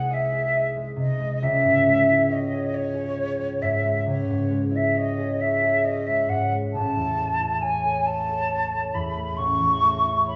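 Yearning and solemn, this romantic classical passage, cut from a longer piece, pairs an airy, hollow concert flute carrying the melody with soft attacks and vibrato over a mellow, thumb-plucked concert harp whose ringing accompaniment moves from G#/B# to C#m at 1.4 s and on to A at 6.7 s, the unhurried 12/8 rubato unfolding in a wet recital hall reverb.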